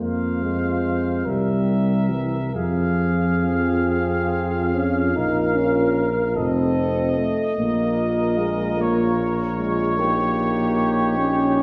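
Elegiac and yearning, this short fragment cut from a longer classical piece is a slow, rubato, hymn-like passage for brass band in F minor and 6/8 at roughly 42-51 BPM, where a bright trumpet section with light vibrato carries the melody over a mellow, distant flugelhorn second line, a clear euphonium set in the background, a smooth-topped trombone and an up-front tuba bass, all heard from further back in a wet recital hall as the harmony moves from Fm through Bbm to Eb7/Bb at 10.0 seconds.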